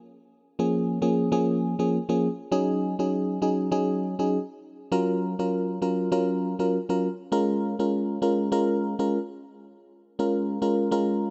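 A glassy, bell-like FM electric piano with chorus enters alone at 0.6 s and plays up front through this mellow, smooth afrobeats excerpt at 100 BPM in Bb minor, its full-bodied, fast-attack tones decaying over a swung sixteenth-note feel and a Bbm7, Ab7sus4, Gbmaj7 progression, set in light digital reverb until 11.3 s.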